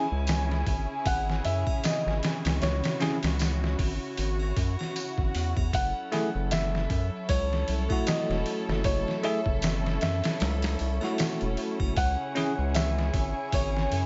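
This hypnotic, dark trip hop fragment of a longer piece opens with a felt-muted upright piano carrying the melody, soft and intimate with audible action noise and a tape echo. Beneath it sits a bell-like tine electric piano under harmonic tremolo, and a dark chamber string section holds sustained chords with sul tasto bowing, light vibrato and a vintage 12-bit sampler grit. A round analog bass, deep and saturated, and a compressed, pitched-down sampler-style drum kit with a thumpy kick and small room ambience arrive almost at once, sitting up front at 77 BPM in 4/4 with swung 16ths. Tambourine and triangle add acoustic colour in the background. An electronic swell rises from 4.5 s into the harmony's move from C#m to F#m7 at 5.7 s, and a very quiet, breathy wind-like noise texture enters at 7.1 s. The chords return to C#m at 12.0 s, the electric piano drops out shortly after at 12.5 s, and the mix stays dry and dark-toned.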